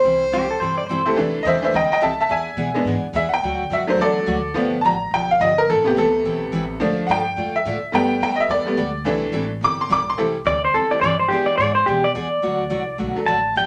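This down-home western swing clip opens with a round, gentle synth lead carrying the melody, faintly shadowed by a clear, bowed fiddle, and both fall away within the first second. A pedal steel guitar appears briefly in those opening moments. Picked acoustic guitar, tack piano and pizzicato upright bass carry the swinging accompaniment throughout. From 1.2 seconds the jangly, metallic tack piano sits up front for a honky-tonk solo over chords that pass through sixth, seventh and added-ninth colours, with the bright dreadnought guitar, complete with finger squeak, and the woody bass underneath. At 10.2 seconds the clean electric pedal steel, played with fingerpicks, slide and volume swells, takes the solo, and the band sits in a short, wet studio reverb.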